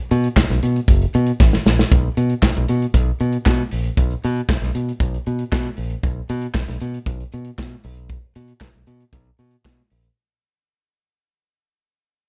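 A dry, close sound puts a bright, direct fingered electric bass and an acoustic soul drum kit up front in this danceable, glamorous disco fragment at 116 BPM in straight 4/4, tuned slightly below standard pitch. The small-room kit brings a punchy kick, a medium-tuned snare, hi-hat and handclaps with a rolled-off top, while the bass moves through its low register beneath it. A drum fill at 1.4 seconds leads into the second section, and the pair fades out from 1.9 seconds until the cut at about 10 seconds.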